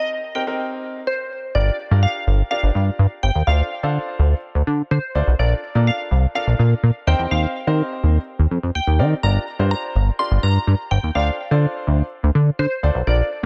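A straight 4/4 dance-pop groove at 125 BPM in G minor drives this confident, energetic cut from a longer piece, with a glassy, crystalline wavetable pluck carrying the melody over a clear baby grand piano, both trailed by dub echo through the opening build-up. At 1.6 seconds the drop lands as an up-front, nasal chorused synth bass enters with a retro pulse-wave bite, while the chords cycle through Gm7, Dm7, Bbmaj7 and Eb6. The echo-heavy mix sits in light reverb and studio ambience, with the detuned, warbling pluck adding a vintage digital sheen above the polished piano.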